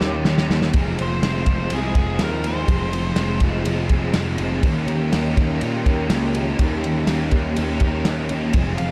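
Brooding, dreamy shoegaze and dream pop rock, this excerpt opens with a drum fill from a loose indie kit, up front with a tight kick, medium-tuned snare, ride cymbal and a rolled-off top, as a growly fuzz bass pushes forward beneath a crunchy chorused guitar riff and a raw garage guitar tucked in the background, soaked in reverse reverb. A nasal, overdriven lead guitar with a parked wah and analog delay sings a melody until 3.4 seconds, returning briefly at 8.8 seconds. Underneath, a very quiet vintage sawtooth string machine of cellos holds slow-attack phased chords, and a shimmering, octave-doubled twelve-string acoustic guitar fingerpicks arpeggios, all set in a small, dark room.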